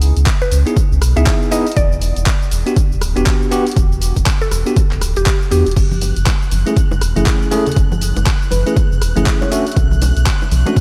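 Deep house excerpt with a moody, hypnotic, swung groove, where a punchy, up-front electronic kick and a layered kit of handclaps, hi-hat, rim click, shaker and crash drive a deep, sidechain-pumped sine sub bass, as a woody mallet-like pluck with analog delay and gritty, bell-like tine electric piano stabs enter early on; the pluck gives way at 5.7 seconds to a silky string machine, dry background congas and bongos, and a sparkling FM electric piano with tremolo and tape echo over minor ninth chords in light digital ambience.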